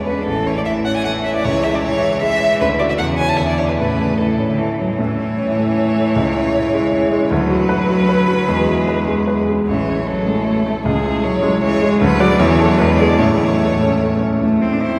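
A cheerful, lively classical-period piano trio movement at a quick 153 BPM in 3/4 and A major, cut from a longer piece, where a rich, expressive solo violin sings the melody with vibrato, portamento and a soft attack, a clear, smooth cello bows an even second line, and a warm baby grand piano supplies the accompaniment, the violin and piano sitting up front within a wet cathedral reverb heard from further back in the room.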